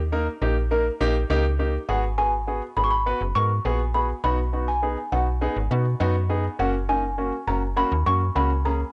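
A buzzing, woody marimba carries the melody from 1.9 seconds with cassette tape colour and tape echo, over an intimate concert grand piano with audible action noise and a snappy, metallic slap-like FM bass up front, giving this bittersweet, driving dance-pop fragment in G# minor at 102 BPM a small-room, home-cassette feel as the chords move from D# through G#m7, B and F#.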